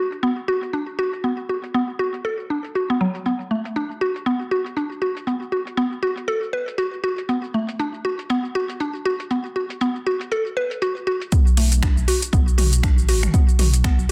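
A woody, nasal mallet-like synth pluck sits up front, playing chorused, delayed arpeggios with sidechain pumping in this driving afro house piece, cut from a longer track and set to a swung sixteenth feel. Beneath it, a quieter deep house kit of finger snaps, metallic hi-hats, shaker and toms comes through low-pass filtered and overdriven in a moderate room. The drop at 11.3 s brings in a punchy, overdriven kick, and at 11.6 s a round, dark analog bass joins over the B5 harmony, all within a dense, heavily limited master.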